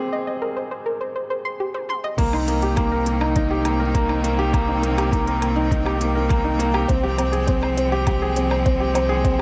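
A felt-muted upright piano sits up front throughout this cinematic, moving piece of piano and strings electronica, its mellow, intimate riff carrying audible action noise and a touch of delay. It opens in C minor at 102 BPM alongside a soft, round pluck playing detuned arpeggios through chorus, delay, sidechain pumping and a filter sweep, over a rootless Fmadd9/C chord in a brief build-up. A drum fill from the organic electronic kit, with crisp, overdriven hats, toms, woodblock and crash, leads into the drop at 2.2 seconds. There a bowed string quartet enters with clear, focused sustained chords on Cm7, arriving together with a deep, evolving analog bass on C2 and an overdriven electronic kick, and the strings and bass pump under sidechain. Light digital reverb frames this excerpt, cut from a longer piece, as the harmony returns to Fmadd9/C near the end.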